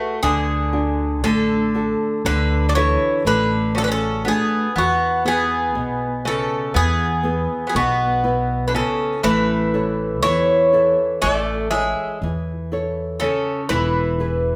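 Recorded with the band playing live together in one large studio, this short cut from a longer Greek folk piece sits in a moderate reverb that gives it a gentle sense of space. The mood is tender, moving in a straight 9/8 over chords that pass from D to E and on to A before returning to E. Up front, a bouzouki carries the melody with picked, doubled metallic strings, some of them octave-doubled, giving its line a warm character. A second bouzouki plays a lower supporting line with a brighter picked tone, while a small-sounding nylon-string guitar is fingerpicked underneath, its finger squeaks audible. An upright bass joins at 0.2 s, played pizzicato on steel strings with a woody tone that anchors the ensemble.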